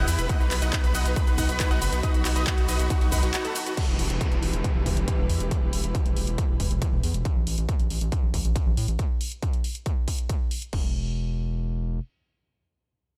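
Lightly reverberant, this driving, emotional uplifting trance excerpt at 138 BPM in E harmonic minor opens on a drop where a huge, euphoric, bright supersaw lead with analog delay carries the melody over a very quiet vintage grand piano line, lush detuned pluck arpeggios, dark, intimate sul tasto strings holding chords in the background, a gritty, saturated synth bass, a tape-toned analog drum machine with claps, hi-hat, ride, shaker and crash, and a distorted, overdriven kick up front, with the lead, pluck, strings, bass and drum machine all pumping to the sidechain, until the pluck drops out at 3.7 s and at 3.8 s the lead and piano stop as a filter sweep works on the bass and a background downlifter enters, the strings holding until 7.2 s.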